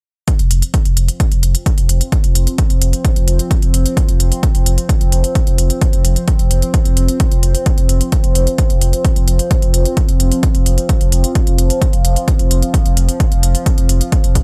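Driving peak-time techno at 130 BPM in a straight 4/4, this short section cut from a longer piece has an intense, industrial mood. A punchy, up-front electronic kick drum anchors the groove from 0.3 seconds, joined at once by smooth, layered electronic hi-hats that carry sidechain pumping and a touch of studio reverb. A deep, thick saturated sub bass holds F1 with a fast attack and sustained tone, shaped by a low-pass filter and sidechain pumping. From 0.7 seconds an evolving analog drone built from sawtooth and pulse waves with pulse-width modulation fills the space between F3 and C4, its slow attack and long release colored by chorus, phaser and sidechain pumping. The kick and sub bass sit prominently over the quieter drone and hats, and the overall sound is dry and loud, with a single F5 chord underpinning the whole passage.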